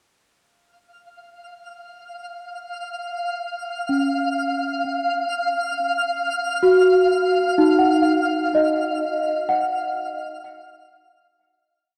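A bell-like celesta, placed up front, plays sweet, delicate arpeggios from 3.9 seconds, ranging from Db4 to Gb5 and carried by tape echo. It is struck with medium felt hammers, and four slow loops of unequal length drift against each other. Also up front, a twinkling granular texture arrives at 1.7 seconds, holding a sustained high F5 with an FM sparkle, an octave-up shimmer, a slow attack, a long release and its own built-in reverb. This short, complete ambient piece moves at 63 BPM in a straight 3/4, with harmony resting on Db before shifting to Gb5. Both parts fade in, and a fade-out begins at 7.9 seconds. A huge, wet reverb with a 7.4-second decay surrounds the music, giving it a melancholic yet serene mood.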